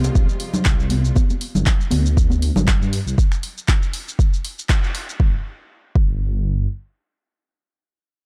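A deep, rumbling detuned saw bass sits up front with sidechain pumping through this hypnotic, spiritual afro house excerpt at 119 BPM, joined by an overdriven electronic kick from 0.2 seconds, a layered deep house kit of finger snaps, handclaps, hi-hat and shaker, bright compressed congas, and a brief rich bowed string section holding an Fmadd9 chord before the groove moves to G5 and then drops its chords at 3.2 seconds, all in a dark small-room production.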